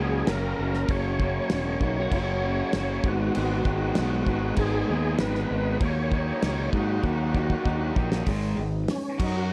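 Classic rock with a swaggering, driving straight feel at 98 BPM in G# minor, this short excerpt cut from a longer piece sets a gritty, key-clicking overdriven tonewheel organ through a slow rotary speaker with chorus vibrato over a very quiet, warbling string-machine cello pad, a raw lo-fi garage guitar and a brilliant, tight distorted guitar on riffs, an up-front growling fingered bass, a damped 70s kit with a fat snare and tight kick, and a brief dark octave-fuzz lead guitar line at 1.8 seconds, all in a moderate large studio reverb, moving from F# through G#m and D#m before a drum fill at 7.0 seconds hands off to an organ solo at 8.3 seconds.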